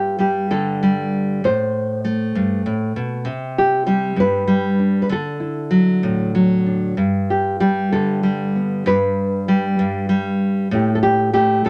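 A moderate studio reverb gives the room a soft, short bloom around an up-front nylon-string guitar in this gentle folk fragment, cut from a longer piece and lasting about 11.7 seconds. The solo fingerstyle playing is thumb-plucked, with a warm, classical tone that ranges from G2 up to C5. It moves in a slow, rubato 6/8 at around 64 BPM in G major, so the pulse breathes freely. The harmony drifts through open, suspended colours: Gsus2, Am7, Csus2 and Dadd9, then settles on a plain G at 7.0 seconds. An unchorded moment follows at 8.9 seconds before an A7(no3) at 10.7 seconds leaves the phrase hanging unresolved.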